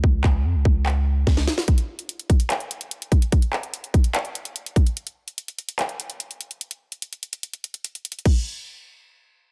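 Dreamy and wistful, this excerpt of half-time trap hip hop sits at 146 BPM in Db major, opening with a boomy, sine-toned 808-style bass that sounds only until 1.5 s, its fast attack decaying mellowly, while a drum fill caps the opening break. The up-front electronic trap kit runs to 8.4 s, with a hard-clipped kick, sharp snare, handclaps, crash cymbal and metallic hi-hats. The mix is dry, with a dense, heavily limited modern master.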